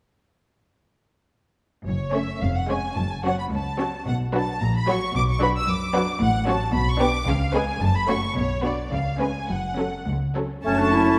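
A stormy, restless classical-period movement in F# minor opens at 1.9 seconds with the strings: up-front violins carry the melody over rich, lush cellos and rich double basses, joined moments later by a second violin line and violas, all bowed with vibrato at a quick 2/4 pulse of roughly 103-114 BPM, pushed and pulled by rubato. The harmony churns through F# minor, B minor and C#7, and at 10.6 seconds the winds arrive, with a clear, distant clarinet, an airy flute section and a mellow bassoon, while a dark French horn section adds soft-attack sustained chords in the background from 10.7 seconds. A wet scoring-stage reverb surrounds the ensemble in this brief cut from a longer piece.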